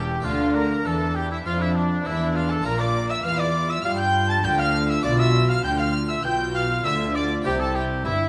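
In a straight 4/4 at 100 BPM, this lively, festive baroque-style concerto movement, cut from a longer piece, sets a solo oboe with light vibrato beside a high violin section carrying the melody on gut strings. A second violin line sits in the background, period-style violas add smooth accompaniment, and a biting cello section joins a rich, reedy double bass section on the bass, all bowed, while a full-bodied, very quiet plucked harpsichord supports them through Dm, Gm7/Bb, Dm69/B and C. A wet recital hall reverb of 1.3 s surrounds the warm chamber ensemble across its 8.3 seconds.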